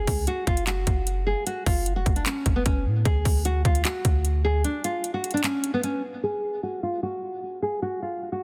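Trap hip hop, dark and hard-hitting in a half-time feel and cut from a longer piece, with a full-bodied, fingerpicked nylon-string guitar carrying the melody up front through a low-pass filter and delay, over a deep, boomy sine 808 bass that drops out at 4.6 seconds and an electronic kit of hard-clipped kicks, metallic hi-hats and handclaps that stops at 5.9 seconds, leaving the guitar alone at the close of a dry, dense, heavily limited mix.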